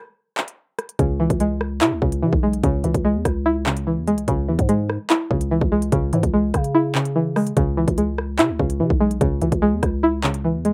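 A twangy, string-like resonator pluck with a bright, chorused, low-pass-filtered tone and a filter sweep carries the accompaniment in this tense, menacing half-time drill cut in C# minor at 146 BPM, arriving at 1.0 seconds over a C# minor chord alongside a growling, buzzy 808-style bass, after an electronic drill kit of hard-clipped kick, crisp hi-hats, handclaps and rim clicks enters at 0.4 seconds, all heard in a rough home-demo mix with light reverb.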